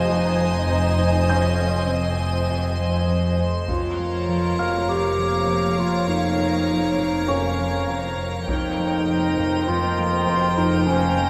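Eerie and ominous, this suspense film score cue moves at 100 BPM in a straight 4/4, and it is cut from a longer piece. Muted, con sordino string sections set the veiled, dark foundation: violins carry the melody with a second violin line in the background, a very quiet viola accompaniment with soft attack sits beneath, and cellos and double basses hold a close, lightly vibrato bass on F. An icy glass pad sustains crystalline, airy chords through chorus and its own reverb, while a bright, ringing concert harp plays a fingerpicked riff in the background and a felt-muted upright piano adds a very quiet, intimate texture. At 3.7 seconds a distant, roomy solo clarinet enters with a second line, and a saturated, compressed taiko ensemble struck with hard sticks booms briefly at 3.7 and again at 8.5 seconds. The harmony shifts from Fm7 to Bbm over F and then Cm7 over F, all bathed in the wet reverb of a scoring stage.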